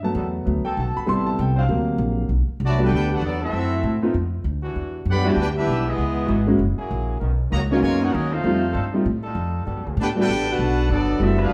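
A vintage, smooth concert grand and a woody pizzicato upright bass open this joyful, swinging big band jazz excerpt, with a loose, bright trombone section holding sustained chords low in the mix from 0.2 seconds, before a clear, present second trombone line enters at 2.6 seconds and a distant, roomy trumpet section takes the melody with light vibrato at 2.7 seconds, the band heard from further back in a moderately reverberant large studio.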